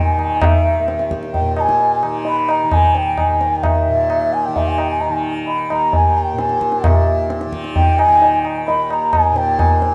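Serene and meditative, this short cut from a longer Hindustani classical piece moves at 131 BPM in a straight 7/4 in Eb major. An airy, distant bamboo bansuri carries the melody with soft attacks, vibrato and a slightly unsteady delivery over a bright, buzzing, shimmering tanpura drone, while a low-tuned, ringing tabla enters at 0.2 seconds, sitting compressed, saturated and up front. The rough home-demo mix is bathed in a lush hall reverb, and the music shifts into a new section at 6.8 seconds.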